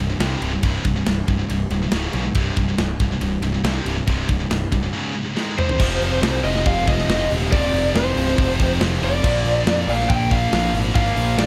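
Dark and epic, this heavy metal excerpt, cut from a longer piece, drives forward in a straight 4/4 as two bright, high-gain rhythm guitars, one of them scooped, churn out low distorted riffs in the background. Beneath them, a punchy fuzz-drenched electric bass sits up front, while a tight acoustic metal kit with a medium-tuned snare and a big-room sound pounds along on kick, snare, hi-hat, toms, ride and crash. Over power chords that move between C and Db, a drum fill at 5.4 seconds tips the music into its second section, where the harmony shifts to Fm and then Bb. A lead guitar through a small cranked amp enters at 5.6 seconds with a high overdriven melody. At 5.8 seconds, a very quiet double-tracked, biting overdriven guitar joins the riffing, and a hollow, flute-like pad with a soft attack and chorus holds sustained chords. Everything sits in a small room ambience.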